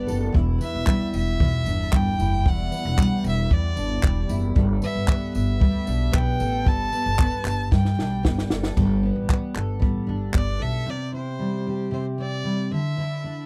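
Acoustic pop in G major at 114 BPM, this sunny, heartfelt passage, cut from a longer piece, moves in a straight 4/4 with a dry, close 1970s-style studio sound and little reverb. A double-tracked, full-bodied jumbo steel-string acoustic guitar sits up front, picking the accompaniment through Em7 and Gadd9 chords. Above it, a single bowed violin carries the melody with a smooth, even tone and rich vibrato. A woody pizzicato upright bass on steel strings anchors the low end, and a compact cocktail kit, also up front, adds a punchy kick, a high-tuned snare, dark cymbals, handclaps and tambourine, with a drum fill at 7.7 seconds. The bass leaves at 10.8 seconds, shortly after the drums, and guitar and violin carry on together over C and Dsus2 until the cut at 13.5 seconds.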